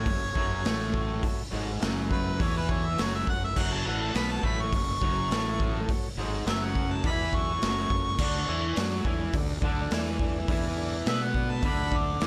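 An overdriven harmonica solo, distant and roomy with light vibrato, leads this raw, swaggering garage rock excerpt in F# minor at 104 BPM over a bright, double-tracked picked guitar riff, a fuzzed fingered electric bass, a mellow vintage combo organ holding sustained chords in the background, and an up-front, saturated, gritty drum kit with a punchy kick and a pumping stone-room sound, the chords moving from F#m to D5 at 8.2 seconds in a dry mix.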